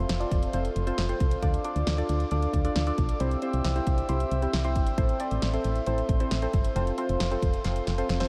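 This excerpt opens at once with chorus-treated analog keys, a glassy harmonica and a round FM bass sounding together, and a house drum kit comes in at 0.1 s. It's a driving yet melancholic synth-pop piece at 135 BPM in a straight 4/4, moving through F, Dm, C and Am before returning to F. The keys are mellow and sawtooth-based with a filter sweep, holding the accompaniment in the middle register, while the harmonica's pure, slow-attack chords float high above. Down low, the punchy, dark FM bass carries the foundation with fast-attack, decaying notes, and the electronic, layered kit delivers a punchy kick and snare with bright hats, closing with a drum fill from 7.6 s. Keys, bass and drums sit up front, yet the whole mix is soaked in a huge ambient reverb that gives it a dreamy haze.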